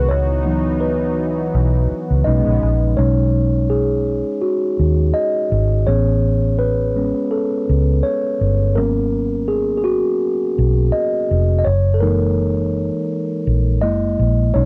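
Relaxed and mellow, this short fragment of a longer R&B piece moves at an unhurried pace with a lightly swung sixteenth-note feel. A tine electric piano sits up front throughout, clean, direct and warm, taking the featured role while carrying the chords through C#m11, B69, Amaj7, G#m11 and on to F#13 and F#7. For the opening 3.0 seconds, a detuned sawtooth analog pad adds smooth, soft-attack sustained chords with a chorus shimmer, then drops away as the second section begins. A muted fingered electric bass stays present to the end, dark, punchy and round, with tube saturation giving it an amped edge up front in the mix. Light reverb and the cassette-tape character on the keys and pad lend the whole thing an intimate, homemade sound.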